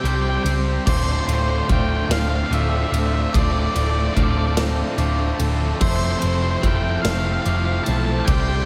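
A big arena sound bathed in a lush hall reverb opens this short excerpt from a longer post-rock piece, melancholic and cathartic, moving at a slow 49 BPM in 6/8 in D minor. Up front, a dark, round hollow-body short-scale bass anchors the low end while a big acoustic rock kit drives with a punchy kick, medium-tuned snare and bright crash and ride cymbals. Over them, an octave-fuzz lead guitar sings a dark, distorted melody coloured by slapback echo and analog delay. Behind it sit two overdriven guitars playing a riff, one biting and bright, the other compressed and warmer, both touched with slapback echo, along with a clean electric guitar picking arpeggios through harmonic tremolo, slapback echo and analog delay. A glockenspiel struck with soft plastic mallets adds ringing, bell-like arpeggios high above, and a smooth, bowed studio string section holds sustained chords with vibrato. The harmony moves from Csus2 to Dm7 at 0.9 seconds and settles on Fmaj7 at 5.8 seconds.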